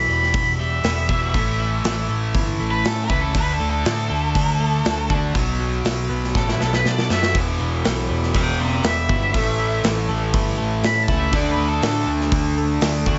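Cut from a longer piece with a muffled top and a small-room sound, this brooding, angsty stretch of quiet-loud alternative rock sets a dark, fuzzy octave-fuzz lead guitar melody (soaked in plate reverb and tape echo, ending at 12.1 seconds) over a bright, scooped, compressed distorted guitar riff, a clean twelve-string electric guitar playing phased arpeggios in the background, a growly, punchy overdriven picked bass and an up-front big rock drum kit with a punchy kick, which plays a fill just before a lo-fi, warm raw garage guitar riff joins at 7.3 seconds.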